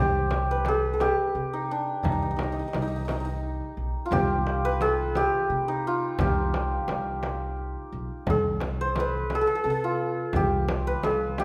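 A shimmering, ringing santur carries the melody up front in this hypnotic, longing excerpt from a Persian modal ensemble in 6/8, over a woody pizzicato upright bass, while a deep, saturated frame drum and a vintage, band-limited tombak enter at 0.3 seconds in the background, the ensemble sitting in a moderate recital-hall reverb.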